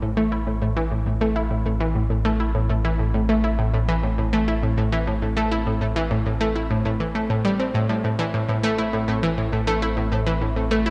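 Drenched in spring reverb and heavy echo, with the soft grain of cassette tape, this short cut from a longer piece of ambient, sequencer-driven space music feels hypnotic and cosmic. Up front, a bright, detuned sawtooth pluck with a fast attack and quick decay repeats a riff, thickened by chorus and trailed by tape echo. Beneath it, a round analog bass holds a deep, dark low note built from triangle and sine tones. A resonant pad sustains chords very quietly in the background, its slow attack and filter swell giving it an evolving shimmer. From 0.2 seconds, a warbly, dusty lo-fi pluck adds very quiet, mellow arpeggios with a noise layer and filter sweep, circling over one unchanging chord.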